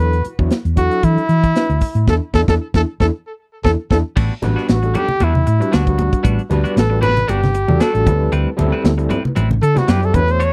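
A swung sixteenth-note groove at 115 BPM drives this slick electric jazz fusion excerpt, where a dark, tight funk drum kit and a round, punchy hollow-body electric bass sit up front beneath a barky, overdriven tine electric piano with medium tremolo and lush chorus, as a mellow trumpet melody with vibrato and tape echo moves through a band accent and drum fill into a solo at 4.2 seconds in A minor, joined by twangy, compressed clean guitar stabs and thin-skinned, damped congas, all in a dry, close 1970s-style studio sound.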